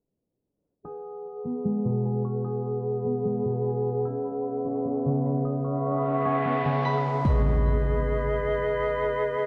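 Floating and blissful, this short fragment of half-time hip hop at 150 BPM in B major sets a mellow small flute group's sustained chords, pure and touched with vibrato, against a ringing, fingerpicked concert harp playing arpeggios through delay, both up front from 0.8 seconds. An eerie, inharmonic synth bell, dark and detuned with chorus and delay, carries a melody in the background until 6.8 seconds, while a filter sweep shapes the opening and an electronic noise sweep leads into an impact at 7.2 seconds. A huge ambient reverb and a low-pass filter cloak the mix as the chords move from B6 to C#m7 and back to B6.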